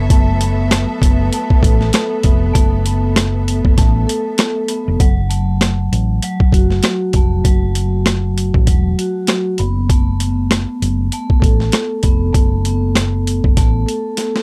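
A swung, pitched-down boom-bap beat of thumpy kick, high-tuned snare, rim click and hi-hat drives this gritty, reflective hip-hop fragment, as a round, punchy hollow-body electric bass and a mellow, airy soft-mallet vibraphone with slow motor vibrato sit in a dry, saturated mix, while a lush bowed string section holds sustained chords only until 5.0 seconds and the drums close on a fill at 14.2 seconds.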